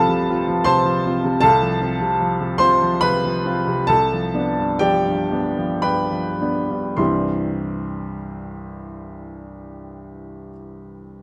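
A warm, open baby grand piano with long sustain sits up front in this lyrical, hopeful romantic character piece for solo piano, a brief passage cut from a longer work in C major and 3/4 at 50-80 BPM, tuned to A4 = 439 Hz, played with rubato and slowing from 0.3 to 7.0 seconds across F/C and G7/C harmonies before settling on C as a new section begins at 7.0 seconds, all captured by close, detailed microphones with light reverb.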